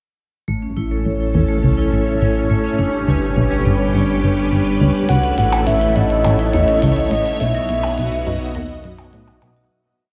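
A straight 4/4 pulse at 104 BPM drives this cosmic, expansive piece of sequencer-driven space music in A lydian. It is built on a punchy, funky analog bass riff looping in six steps against the bar under a filter sweep, a deep sine sub bass holding the roots, and metallic, ringing vibraphone arpeggios up front, cycling in seven steps through shimmer reverb and tape echo. Swirling vintage string-machine chords fade in from 0.5 seconds beneath a pulsing, detuned gated texture holding a high note as the harmony moves through A, G and B, while at 5.1 seconds a soft octave-layered lead enters with dark, round arch-shaped motifs alongside clicky electronic hats and low woodblock blips, all set in a huge ambient reverb with worn, warbling cassette-tape drift before a fade-out from 6.6 seconds.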